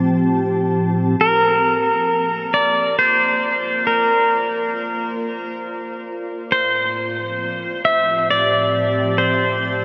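A bright, twangy electric pedal steel guitar carries the melody in this weightless, serene ambient piece, entering at 1.2 seconds with clean, compressed fingerpicked lines, slide and volume swells, all trailed by a diffuse ambient delay. Beneath it, a dark, glassy FM pad has held sustained chords from the very start, its slow attack and long release softened by ensemble chorus and its own built-in reverb. The pad fades in gradually once the guitar arrives, while the steel stays up front and clearly louder. The music moves at an unhurried 68 BPM in a straight 3/4, tuned to A4 = 435 Hz, drifting from F/A to Bbmaj7 and back to F/A at 6.5 seconds. A huge, wet reverb with a 7.8-second decay surrounds the whole track, and the passage is cut from a longer piece.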